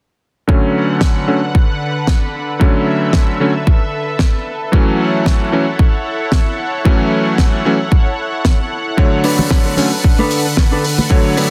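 A clear, clangy electric grand piano sits up front in this cosmic, groovy nu-disco excerpt, playing filtered, delayed accompaniment in B minor at 113 BPM with a light 16th-note swing. Beneath it, a thick, detuned sawtooth pad warbles with chorus and pumps against a punchy, layered electronic kick, while a dry 70s kit adds hi-hat and a fat snare. The harmony moves from Bm7 to F#m7 and back to Bm7. Near the end, a dark, clean, fingered electric guitar riff enters at 9.2 seconds, bathed in chorus and delay, joined at 9.4 seconds by bright, high-tuned congas. Light reverb and a small room ambience frame a dense, heavily limited modern master.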